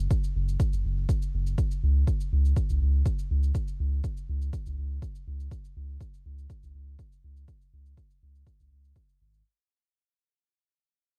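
Dub techno at 122 BPM in a straight 4/4, this hazy, hypnotic fragment is cut from a longer piece and fades out across its full 9.4 seconds. A soft dub sub bass sits up front from the very start, deep and round with a fast attack and sustained tone, moving between F#1 and C#2 and colored by tube saturation and sidechain pumping. An electronic kick drum enters at 0.1 seconds, punchy and layered, pushed forward in the mix and roughened by cassette tape. A cabasa arrives at the same moment, an analog, overdriven texture buried far back, trailed by dub echo and tape grit. The sound is dry, with little reverb, and carries the murky character of a home recording on cassette.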